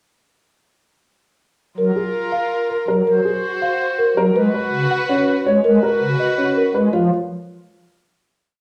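A woody, rustic folk marimba played with soft mallets carries the repeated melodic cell of this short, propulsive and bright minimalist classical piece in 7/8, entering at 1.8 s alongside a distant oboe second line with light vibrato and swelling held notes, a shimmering pipe organ strings celeste accompaniment placed up front, and smooth bowed violin-section chords, while dark, worn grand-piano arpeggios with audible action noise join at 2.0 s, the ensemble heard from further back in a large, reverberant studio before the final chord at 6.9 s.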